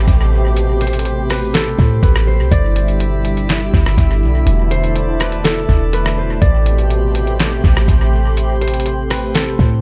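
Melancholic and spacious, this atmospheric cloud-rap cut moves at 123 BPM in 4/4 with a half-time feel, set in A minor and taken from a longer piece. A mellow, thumb-plucked concert harp carries the melody between A4 and D5, its ringing acoustic tone trailed by tape echo. Beneath it, a smooth analog pad of detuned sawtooth chords drifts through Am9, G6 and E7sus4 with soft attack, chorus and sidechain pumping, while a glassy texture of drifting sine overtones sits in the background with a long release and its own reverb. Up front, a deep, boomy 808-style bass with a fast attack and a noise layer anchors the low end. The lo-fi sampler-style drum kit enters at 0.1 seconds, pitched down and muffled, with a thumpy kick, fat snare, rim click and hi-hat, all compressed and touched with tape echo. An echo-heavy digital ambience surrounds the whole mix.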